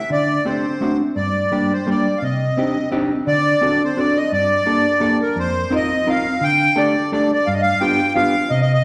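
Bathed in the wet reverb of a church or concert hall, this bittersweet, nostalgic musette waltz in G minor swings along at 172 BPM in 3/4, with a reedy, sweet accordion carrying the melody in its light tremolo tuning while a dark, clean hollow-body electric jazz guitar accompanies up front through chords like D7, Gm and Cmadd9, shifting to a new section at 5.4 seconds that moves through F7sus4 and Dsus4 before landing on G7 as this brief fragment of a longer piece ends.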